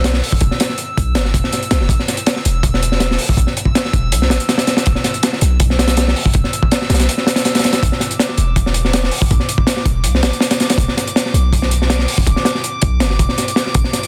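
A crunchy, saturated breakbeat kit drives this raw, nostalgic drum and bass excerpt at 162 BPM in a straight 4/4, its tight kick, medium-tuned snare and hi-hat sitting up front with a gritty, dark tone and a rolled-off top. Beneath it, a deep, boomy 808-style bass with a sine body, a noise layer and a fast, decaying attack moves between E1 and C2, stopping at 13.8 seconds. Far behind, a calm, glassy texture of drifting overtones holds high between D6 and E6, swimming in chorus and built-in reverb under a light room sound and a dense, heavily limited master.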